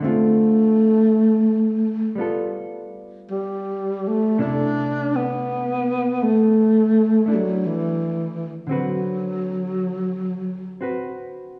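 A clean, dark hollow-body electric jazz guitar opens this intimate, late-night swung jazz fragment with fingered chords moving through Dm7, G9, C69 and D6, as a breathy tenor saxophone enters up front at 0.1 seconds to carry the melody with a whispered subtone, vibrato, scooped notes, a soft attack and a smooth top, all set in the reverb of a recital hall.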